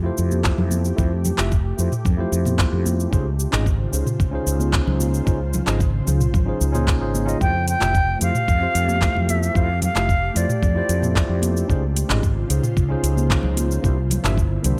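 A straight 4/4 groove from a gritty, thumpy electronic kick, an overdriven R&B kit of handclaps, metallic hi-hat, shaker and toms, and saturated congas in the background carries this blissful, relaxed sunset chillout excerpt, where a round, up-front fretless bass and a clean tine electric piano with tape echo move through lush major-seventh and ninth chords beneath an ethereal, detuned chorus-soaked pad, until a pure concert flute with vibrato and tape echo sings an expressive melody from 7.4 to 11.4 seconds.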